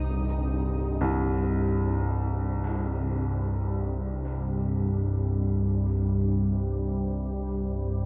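Drenched in a huge, cavernous reverb, this short dark ambient drone feels unsettling from the first moment, cut from a longer piece and floating in free time. An up-front, organ-like drone of detuned sine and triangle tones holds low and sustained, its slow attack and long release shaded by ensemble chorus, ring modulation and a moving notch. From 1.0 seconds a clear, polished baby grand piano adds low arpeggios that trail off through tape echo, sitting quieter than the drone.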